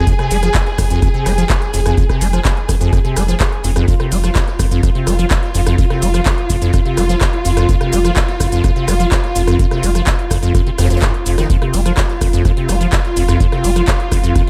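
A straight 4/4 pulse at 126 BPM drives this raw, driving acid house cut in F minor, built on an up-front deep electronic kick, a booming analog drum machine with metallic hats, handclaps, rim click and shaker, and a very quiet big-band drum kit adding hi-hat and snare, while a squelchy, resonant square-wave acid bass riff with filter sweep and ensemble chorus rides over a saturated triangle sub bass sitting on F1 and a rich, bowed studio string section sustaining chords, the strings and sub both carrying sidechain pumping beneath light reverb.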